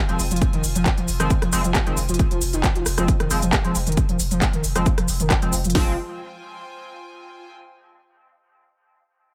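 A straight, driving pulse from two overdriven, up-front techno kits sets a relentless peak-time groove, one kit with heavy kick, cracking snare and smooth hats, the other adding handclaps, rim click and shaker, while a deep, thick sub bass holds a single low note under a low-pass filter. Over it a gritty, screaming synth lead with guitar-like distortion and tape echo repeats a riff through a filter sweep, and a nasal, edgy polysynth with oscillator sync and dub echo fires chorused stabs, with the bass, lead, stabs and strings all pumping against the sidechain. A floating, bowed string section sits far back and fades through the opening, then plays alone from about 6.0 s until the cut at 7.5 s in a light digital ambience.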